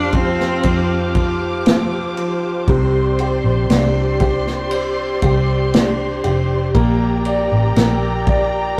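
A clear, bowed solo cello opens this heartbroken pop ballad at a slow 59 BPM, its smooth vibrato melody carrying the longing up front before it stops at 1.2 s. Beneath it, a polished grand piano supplies present, warm accompaniment, while a veiled string section plays con sordino, holding dark sustained chords with ensemble vibrato. A vintage fingered electric bass, foam-muted and amped, sits up front with a round, punchy low end. An acoustic drum kit, played with bundle sticks, joins at 0.1 s and sounds distant and roomy, with a tight kick, a medium-tuned snare and dark ride cymbal. The harmony moves from Fsus2 to Csus2 and then to Gm, and the whole passage, cut from a longer piece, has the rough, tube-saturated character of a rehearsal room with a short, wet reverb.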